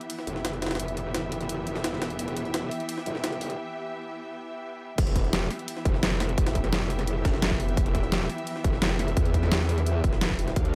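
A growling, wobbling bass sits up front through this tense, aggressive dark technical drum and bass excerpt at 172 BPM in E phrygian, its saturated formant-filtered tone shaped by sidechain pumping, while a lush bowed string section holds sustained chords with smooth vibrato behind it. Two overdriven drum kits drive the groove, a deep-snared dubstep kit with crash and hi-hat up front and a gritty, pitched-up jungle kit with a high-tuned snare in the background. The build-up breaks at 3.6 seconds before the drop lands at 5.0 seconds, where a punchy electronic kick enters, all set in light digital ambience.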